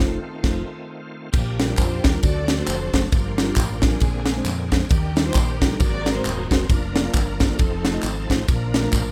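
Uptempo gospel in Bb major at 134 BPM, with a swung eighth-note feel and a soulful, reverent mood, heard as a short excerpt from a longer piece. It opens on a band accent over an F7 chord, and the crisp fusion drum kit enters at 0.4 seconds with a high-tuned snare, punchy kick, ride and crash, sitting up front in an airy studio room. From 1.3 seconds a tambourine, maracas and group handclaps add a live-room shimmer as the harmony moves through chords such as Gm7, Ebmaj7 and Ab9 before settling on Bbmaj7. A bowed string section carries the melody with expressive vibrato, portamento and a smooth top, while a mellow, clean tine electric piano and a round, dark fingered bass support it from the background. A bright, shouting tonewheel organ holds sustained chords through a fast rotary speaker with light overdrive and chorus vibrato, stepping out for a short fill at 7.8 seconds, all within a rough home demo mix with small room ambience.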